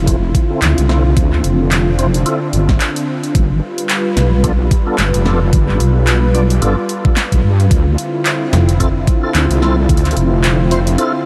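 Gritty and funky, this glitch hop excerpt moves with a swung sixteenth-note feel over a light haze of vinyl crackle and digital ambience. A heavy, detuned wobble bass with tube saturation sits up front alongside an overdriven, knocking electronic kick. A drum kit of cracking snare, bright hi-hats and handclaps, also overdriven and re-recorded in a small room, fills out the groove. Above them, a smooth, warbling analog pad holds sustained chords moving from Dm9 to G7 and back, pumping against the sidechain. A full tonewheel organ with chorus vibrato and a slow rotary speaker plays stabs through delay and a filter sweep. At 8.5 seconds a snappy, metallic FM slap bass cuts in briefly.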